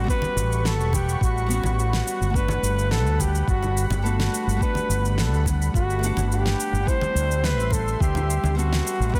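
Sunset chillout with a relaxed, warm mood: a mellow flugelhorn carries the melody up front, its vibrato and scooped notes trailing digital delay and shimmer reverb, while a small fingerpicked nylon-string guitar sits in the background and a thick, detuned sawtooth pad holds sustained chords through chorus. A round, dark fretless electric bass with lush chorus sits punchy and up front, joined by a soft electronic kick, a fat electronic snare with cabasa, and hard-handed, saturated congas tucked behind. The chords move from A13 to Gmaj7 at 2.3 seconds and D9sus4 at 6.9 seconds in this short cut from a longer piece, finished with a dense, heavily limited modern master.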